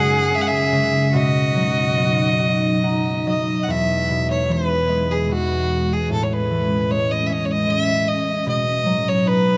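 Celtic folk slow air in 3/4 and E major, drifting rubato at roughly 67-77 BPM with a nostalgic, tender mood, led by an up-front bowed fiddle with a clear, intense tone, light vibrato and tape echo, joined until 3.2 seconds by a bright, focused cello second line, while a fingerpicked, ringing concert harp accompanies throughout and adds a fill from 2.4 to 3.7 seconds, and an ethereal, warbling, detuned pad with ensemble chorus holds mellow sustained chords beneath, all captured close and detailed in light reverb in this brief section cut from a longer piece.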